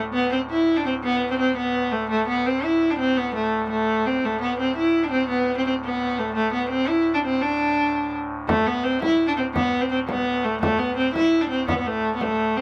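A straight 6/8 pulse at 112 BPM, counted in dotted quarters, drives this festive, ancient-sounding medieval dance, cut from a longer piece. A single bowed, fretted viola da gamba carries the melody up front with a biting gut-string tone and light vibrato, over a soft pipe-organ drone on an oboe stop with audible chiff and tremulant. A deep frame drum enters at 8.5 seconds as the opening section repeats, all in a dry sound.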